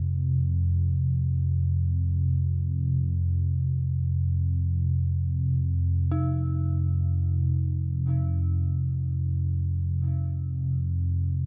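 Floating in free time, this dark ambient drone fragment, tuned to A4 = 444 Hz, sets a dark, unsettling mood around a single F5 chord. A deep, ominous, rumbling drone sits up front from the first second to the end, moving between F2 and C3. Its triangle and sawtooth tones open with a slow attack, sustain, and trail off in a long release through its own built-in reverb and a phaser. At 6.1 seconds a detuned FM synth bell enters far lower in the mix, playing eerie, inharmonic arpeggios around Eb4. Each bell note strikes quickly and decays, shimmering with chorus and a diffuse ambient delay as the bell gradually fades out. The room itself is dry, and the piece was recorded on cassette tape.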